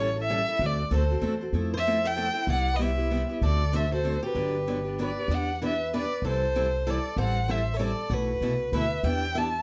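A moderate club reverb gives this lively cut from a longer jazz manouche piece its room sound. At 192 BPM in 3/4 with a swung eighth-note feel, the charming tune sits in G major before turning to E minor at 5.3 seconds, moving through chords such as A7, D7, Fmaj7 and Cmaj7, then Em7, C6 and Am7. Up front, a single bowed violin carries the melody with vibrato, portamento and a smooth, expressive top. Also up front, a pizzicato upright bass on gut strings lays down a woody, dark, thumpy foundation. A picked steel-string parlour guitar supplies the accompaniment with audible finger squeak, and a second picked swing-style guitar enters at 0.9 seconds with a quieter second line; both guitars sound bright and boxy.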